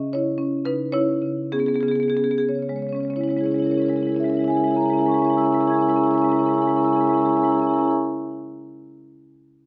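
In a rubato 6/8 that drifts between 59 and 78 BPM in dotted quarters and slows over the first 2.5 seconds, this contemporary classical piece for solo marimba in C# minor moves from a C#m9 harmony to C#m6 at 2.5 seconds. The hypnotic, flowing part is played with medium mallets across a span from C#3 to G#6, its rosewood bars giving a woody, vintage, band-limited tone placed up front. A moderate recital-hall reverb surrounds the instrument in this short passage cut from a longer work.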